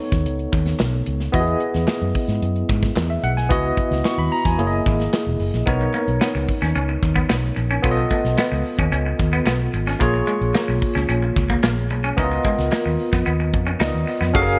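A barky tine electric piano, lightly overdriven with medium tremolo and subtle chorus, sits up front in this upbeat, urban slice of polished 1980s jazz-funk pop, moving through extended chords such as B9, Emaj7 and C#m11. A dark, round, foam-muted fingered bass and a punchy, mid-forward studio drum kit with crash, hi-hat, kick and snare carry the straight groove, while hollow group handclaps sit in the background. At 5.7 seconds a twangy, clean picked electric guitar enters with a riff bathed in lush chorus, all set in a bright digital production with a moderate hall reverb.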